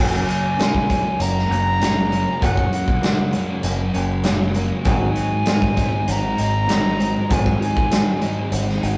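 A pure, straight-toned, tongued concert flute carries the melody from the first moment of this dreamy, blissful shoegaze and dream pop fragment, riding over a dark, thick fuzz guitar riff, a hollow-bodied overdriven semi-hollow guitar riff set in the background, and a growling picked bass with overdrive, over a Gbadd9 chord that shifts to Ab7 at a straight 98 BPM in 4/4. A big rock drum kit with a punchy kick, smooth medium-tuned snare and rolled-off top arrives up front at 0.3 seconds, and a very quiet, compressed clean electric guitar recorded direct adds picked arpeggios from 0.6 seconds. The flute stops at 8.5 seconds, and a moderate stone room reverb lends the rough rehearsal-room sound its space.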